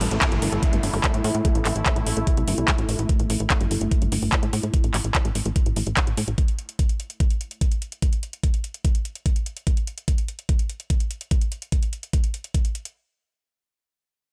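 This intense, alien psychedelic trance excerpt at 146 BPM opens on a bubbling, resonant sawtooth texture sustaining A5 chords with chorus, reverb, sidechain pumping and a filter sweep, joined by a very quiet, detuned unison pluck riff, a tight, driving sequencer bass with tube saturation and its own filter sweep, an up-front garage kit of handclaps and metallic hats, and a background downlifter, before a knocking electronic kick lands at 0.2 s and drives the dry groove with the claps and hats after the bass and texture stop at 6.3 and 6.4 s.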